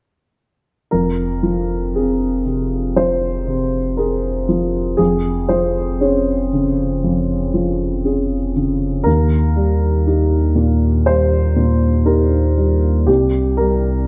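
Neoclassical piano and strings in a fragile, melancholic mood, this short passage taken from a longer piece moves at a slow, rubato pace in 4/4. An upright piano carries the accompaniment from 0.9 to 14.1 seconds, its tone dark, woody and a little boxy, sitting up front in the mix. Beneath it, a round, sine-like sub bass holds deep, sustained notes over the same span, with a fast attack and a soft, mellow edge. The harmony drifts from Fm through Db/F and Eb before arriving on C5 near the close. A moderate recital hall reverb gives the pair a gentle sense of space.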